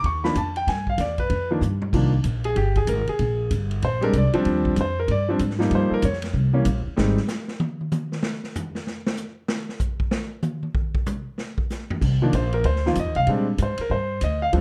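A clear, up-front concert grand piano with deep bass and long sustain opens this swinging, moody jazz trio alongside a woody, thumpy pizzicato upright bass on gut strings and a distant, roomy drum kit with dark cymbals, a punchy kick and a rolled-off top. After a drum fill at 1.6 seconds, the piano takes a solo bathed in plate reverb over extended dominant and major harmonies. Piano and bass drop out around 7.2 seconds for a drum solo, then the bass returns at 12.0 seconds with the piano following at 12.2 seconds in this dark, warm-sounding cut from a longer piece.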